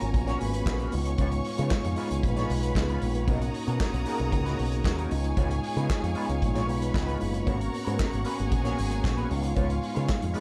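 A straight 4/4 disco groove drives this danceable, glamorous fragment of a longer piece, built on a vintage acoustic drum kit with a punchy kick, a medium-tuned snare, hi-hat and handclaps sitting up front in a small, pumping room with a rolled-off top. A picked electric bass through an envelope filter, direct and amped, rides just as far forward and carries the most weight in the mix. A mellow tine electric piano plays clean accompaniment through its built-in speakers, moving through Abm11, Db7 and Bmaj7, while a dark, slightly broken-up fingered guitar with wah and subtle chorus adds color from the background. Two bowed string sections with vibrato fill out the top: a woody, lush ensemble carries a second line, and a clear, focused ensemble holds sustained chords above it. The whole production is dark and warm, close and dry, with little reverb.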